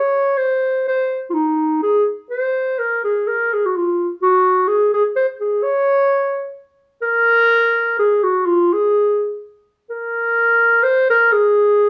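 Bouncy and jolly, this alpine folk fragment from a longer piece moves at 126 BPM in a lightly swung 3/4, with a dark, distant-sounding clarinet playing alone up front in a classical style between Eb4 and Db5, set in a moderate large-studio reverb with a live, roomy feel, and shifting into a new section at 7.0 seconds before it ends at 11.9 seconds.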